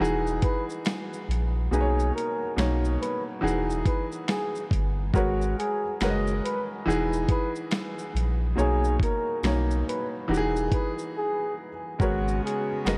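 A woody upright piano with audible action noise, a deep, round dub sub bass and a gritty, thumpy sampler-style soul drum kit of kick, snare, hi-hat, shaker and finger snaps open this hazy, melancholic lo-fi hip hop excerpt at a swung 70 BPM, joined at 0.4 seconds by a breathy, mellow flugelhorn melody trailing tape echo and at 0.8 seconds by a faint, jingly tambourine, before a majestic full pipe organ arrives at 12.0 seconds, all drifting through a dreamy cassette mix soaked in long cathedral reverb.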